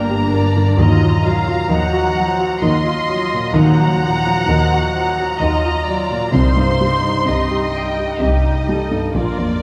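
A wet, reverberant scoring-stage sound frames this tender, moving cinematic excerpt at a rubato 65 BPM in 3/4, where muted violins sing the melody over a second violin line, distant con sordino violas and a polished grand piano accompany, and soft-attack muted cellos and double basses carry the bass through Gm, Ebmadd9 and Cm.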